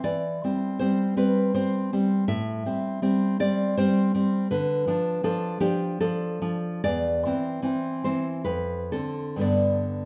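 In a rubato 3/4 that drifts freely, this romantic piece for solo classical guitar unfolds with a sunny, nostalgic mood, cut from a longer work. The fingerpicked nylon-string guitar sits up front, full-bodied and deep, with fresh strings and an audible finger squeak, ranging from E2 to E5 over chords moving from C/E through Am7 and Dm to a G at 9.4 seconds. A wet recital-hall reverb surrounds the instrument, giving it a spacious glow.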